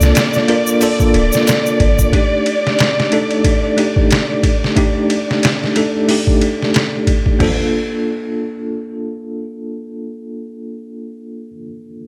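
Trip hop at 91 BPM in 4/4 with a swung sixteenth-note feel, this dark, brooding excerpt is cut from a longer piece and moves from Gm7 through Ebmaj7#11/A before settling on Bbmaj7. A bell-like tine electric piano sits up front, bright and clean, its accompaniment colored by tremolo and tape echo, and it carries on alone after the other parts drop away, lasting until 12.1 seconds. A lush studio string section holds sustained chords around D5, its bowed ensemble tone carrying vibrato and a smooth top dusted with vintage 12-bit sampler grit. The sampler-style drum kit is compressed, pitched down and gritty, with a thumpy kick, medium-tuned snare, hi-hat, ride, crash and toms, all up front with a tape-warm character. A soft, round 808-style bass with a sine tone and fast, decaying attack joins a ringing, close egg shaker for only the opening 2.1 seconds. The strings fall away at 7.4 seconds as the second section begins, and light reverb gives the mix a modest sense of space.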